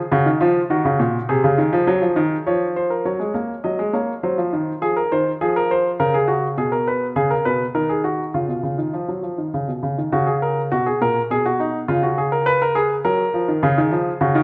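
A polished baby grand piano plays alone from the first moment, carrying a baroque-style two-part invention in three-four time with a driving yet solemn character. The opening idea gives way to a contrasting passage at 3.1 seconds before returning at 10.1 seconds. The piano sits up front within a moderate recital-hall reverb, and this short fragment is cut from a longer piece.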